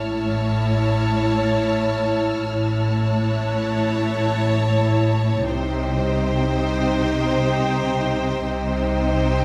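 A glassy, ethereal glass harmonica holds slow-blooming chords in the background of this uneasy, mysterious suspense cue in free time, where a lush, dark violin section carries the high melody over a focused, clear violin second line, woody violas, a warm cello section with expressive portamento, and smooth-topped double basses, while a distant, high violin texture hovers until 5.1 seconds and the harmony shifts from A to C minor at 5.5 seconds in a moderate scoring-stage reverb.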